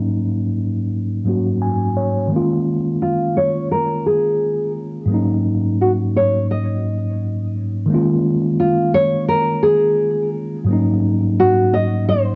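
A mellow tine electric piano, colored by cassette tape and a low-pass filter, sits up front in a moderate spring reverb on this reflective, melancholic hip hop excerpt at 86 BPM in Eb minor, swung on the sixteenths and cut from a longer piece. The piano carries suspended ninth chords on Ab and Eb from the start, with a filter sweep over the first 7.9 seconds and a short piano fill at 1.3 seconds. At 3.0 seconds a dark, thumb-plucked nylon-string guitar with fresh strings and a deep classical tone enters up front to carry the melody through to the end.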